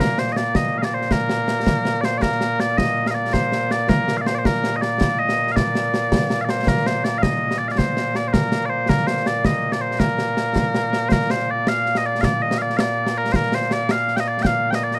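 Scottish traditional pipe music in a straight 6/8 at 108 BPM in Bb major, this stirring, proud excerpt sets mellow, sweet small bagpipes up front carrying a continuous solo melody with vibrato from Bb2 to G5, joined at 0.1 seconds by close, dry concert snare and bass drums with dark cymbals, all in a dark production with little reverb as the tune moves into a new section at 11.1 seconds.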